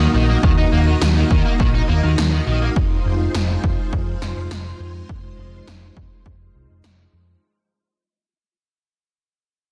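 This synthwave excerpt has a cinematic, nocturnal mood and a straight four-beat pulse, fading out across its full length as part of a longer piece. A lush, vintage string machine holds sustained sawtooth chords with a sub octave, slow attack and ensemble chorus, pumping against a sidechain, moving from Ebm to Fm7. Up front, a dark, round hollow-body electric bass is picked with an amped punch. A bright, overdriven electric guitar riff with analog chorus and digital delay opens the piece and stops at 2.7 seconds. An analog kick drum enters at 0.4 seconds, followed by a gated, overdriven snare at 1.0 seconds, both with studio ambience. Light reverb surrounds a dense, heavily limited modern master.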